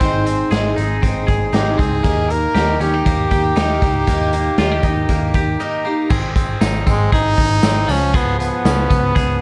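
A clear, up-front trumpet with light vibrato and slapback echo carries the melody through this bright, breezy jangly indie pop excerpt, over shimmering octave-doubled twelve-string acoustic guitar that drops out at 6.1 seconds, twangy spring-reverbed electric guitar arpeggios, a round foam-muted vintage bass, a gritty, saturated garage drum kit with a punchy kick, and a jingly tambourine that joins in the background at 6.1 seconds, all in a dark production with light reverb.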